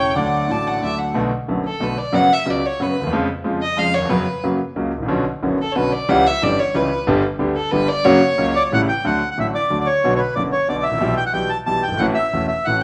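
Tango in a rubato 3/4 at 182 BPM, passionate and playful, moving from B minor to D major at 9.1 seconds in this fragment of a longer piece. A bright concert grand piano with deep bass and long sustain accompanies throughout, while a smooth, bowed violin with vibrato takes a solo from 1.2 seconds. A reedy, boxy bandoneon carries the melody briefly at the start and again from 8.6 seconds, all set in a moderate large studio reverb.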